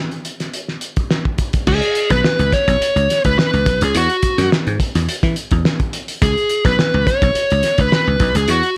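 Funky and playful, this short funk cut at 106 BPM in 4/4 opens with a cloth-damped, thuddy drum kit playing alone from 0.1 seconds, its fat snare, tight kick, dark cymbals and hi-hat sounding muffled, gritty, lo-fi and saturated in a small room. At 1.7 seconds a growly, foam-muted thumbed slap bass and a dark, smooth overdriven lead guitar with slapback echo join up front, moving over Abmadd11/Cb, Esus2 and back to Abmadd11/Cb. A light reverb surrounds the mix, and the tuning sits slightly sharp at A4 = 441 Hz.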